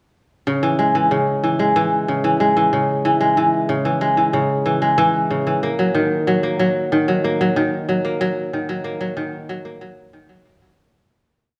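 Delicate and hopeful, this short folktronica piece at 93 BPM in E lydian features a solo acoustic kora, crisp and ringing up front in a wet recital hall reverb, fingerpicking a 10-step arpeggiated loop that drifts against the 4/4 bar over E6 moving to D#m at 5.6 seconds before fading out from 7.3 seconds.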